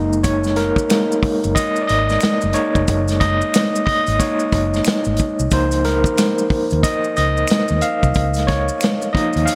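A gritty, overdriven tine electric piano with fast tremolo takes a solo up front from the opening moment over a dark, round, foam-muted fingered bass in this sensual, smooth R&B and neo-soul excerpt at 91 BPM in a swung 4/4, moving from Gb6 to Db69 at 5.5 seconds, while close, dry maracas and finger snaps enter at 0.1 seconds and a distant, roomy soul drum kit of tight kick, hi-hat and snare with gated reverb joins at 0.2 seconds, within a bright 1980s-style digital production and light small-room ambience.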